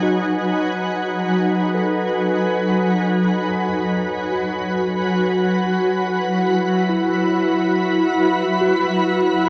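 A shimmering, ethereal pad with an octave-up shimmer sits up front holding slow-blooming, mellow chords in F# dorian. A clean tine electric piano gradually fades in across the full 9.5 seconds with tape-echoed arpeggios in the background, forming a serene, melancholic ambient fragment at 70 BPM that drifts from F#m69 to F#madd9 at 3.5 seconds inside a huge, 7.3-second reverb and a worn, warbling cassette-tape haze.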